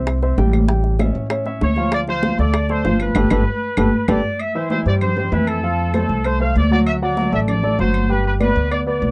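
A short-sustained grand piano and a thumpy, woody pizzicato upright bass open this joyful, sunny salsa snippet in C major at a brisk 194 BPM, joined by tight bongos until 4.2 seconds, dry woody claves, and ringing high-tuned congas set back in a large room, while a punchy, vintage-toned trumpet section with light vibrato carries the melody from 1.6 seconds, the whole band hitting an accent at 3.2 seconds in a close, nearly reverb-free sound tuned slightly low to A4 = 435 Hz.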